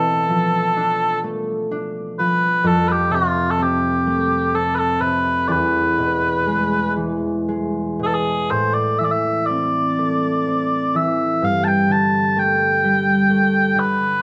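Bathed in a moderate recital-hall reverb, this haunting, mournful Celtic slow air drifts at 62 BPM in a rubato 3/4, as sweet, mellow small bagpipes carry a continuous, vibrato-laden solo melody up front over ringing, fingerpicked concert harp accompaniment moving from Bm7b5 through F, E and Am to a closing Gsus2 in this brief cut from a longer piece.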